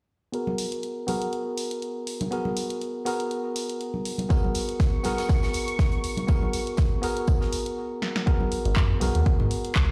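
Moody and smooth, this deep house excerpt at 121 BPM in G# minor swings its 16ths as clean, up-front tine electric piano stabs on a G#m9 chord run through a filter sweep, sidechain pumping and delay over a punchy analog drum machine of handclaps, hi-hat and snare, with damped, thick-skinned congas in soft hands. At 4.3 seconds an overdriven, deep electronic kick drum arrives up front alongside a crisp, airy fusion kit of hi-hat, snare and tambourine set in the background, while a silky, dark string machine with ensemble chorus floats high above until a short break and a drum fill at 8.0 seconds. A nasal, detuned synth bass with vibrato then pumps underneath, and a very quiet, blurred granular cloud pad glimmers at the close, all set in a light stone-room reverb as if played on a big sound system in a bare room.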